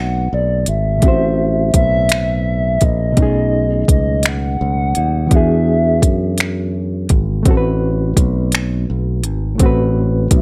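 Yearning and sultry, this slow six-eight R&B fragment at 56 BPM in A dorian pairs a hollow, woody clarinet-like synth lead, soft and chorused with vibrato and carrying the melody until 6.8 seconds, with a barky, reedy electric piano given light overdrive and fast tremolo, a bright, growly fingered electric bass, and an overdriven electronic drum kit of finger snaps, crisp hi-hat and soft kick that enters at 0.7 seconds, all moving through Am69, B13 and E9 in a dry, close sound.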